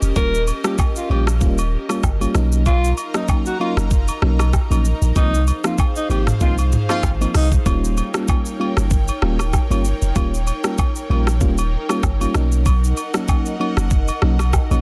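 Joyful and sunny, this afrobeats groove in 4/4 has a light 16th-note swing and is cut from a longer piece. A deep, punchy sine sub bass with a pitch-drop attack sits up front beside an electronic, produced afro-pop drum kit of knocking kick, smooth hi-hats, rim click, shaker and toms, its snare given soft clipping. Agogo bells and woodblock, joined by tube shaker and group handclaps, add close, dry acoustic percussion, while a dark, full-bodied FM electric piano with tremolo and a noisy edge supplies accompaniment over Eb7, Bmaj7 and Ab6 chords. An airy, breathy pad of detuned sawtooth and triangle tones holds soft, warbling vintage chords with chorus and a long release. A warm alto saxophone with vibrato and a smooth top carries the pop-style solo melody through tape echo until 7.5 seconds, and a mellow, tight horn section in octave doubling adds a brief second line from 6.4 seconds inside a band accent that begins at 5.2 seconds. 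The dense, heavily limited modern master has little reverb, giving a dry sound.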